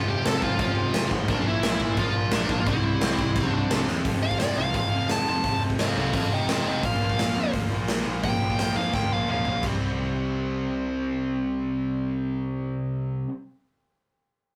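A straight 4/4 pulse drives this rowdy, upbeat punk rock passage, cut from a longer piece, with a punchy acoustic drum kit up front in a stone-room sound, its kick, medium-tuned snare, hi-hat, crash and toms dropping out at 9.7 seconds. Two picked electric guitars, one distorted and compressed, the other overdriven, play riffs in the background beside a bright, growling overdriven bass. Meanwhile a dark, smooth overdriven lead guitar carries the melody and takes a solo from 4.1 to 9.6 seconds, all in a rough rehearsal-room sound with light reverb and warm saturation.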